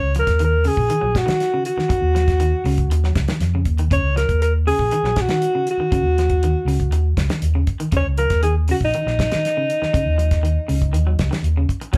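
A straight 4/4 afrobeat groove at 120 BPM rides on a damped 70s drum kit with a fat snare and tight kick and a round, dark fingered electric bass in this funky, driving excerpt in Eb minor, resting on a single Ebm7 chord. An electric guitar at the edge of break-up plays twangy, picked arpeggios, while a breathy alto saxophone with light vibrato carries a punchy, pop-style solo melody up front until 11.4 s. The band plays live in one room with moderate studio reverb, which lends the saxophone a roomy, slightly distant quality.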